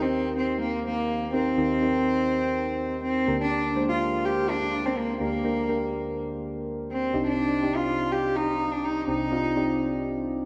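Pop with a romantic, nostalgic mood, this short clip cut from a longer piece sets a bowed cello melody over soft, round electric-piano-like synth keys that carry the harmony through chords of Eb6, Gm/D and Cmadd9. The cello, a single player with a soft attack and a pure, floating tone, is treated with analog delay, while the full-bodied, dark keys are thickened with chorus. A long plate reverb soaks the mix in a dreamy haze until the cello stops at 10.0 seconds and the keys ring on to 10.5 seconds.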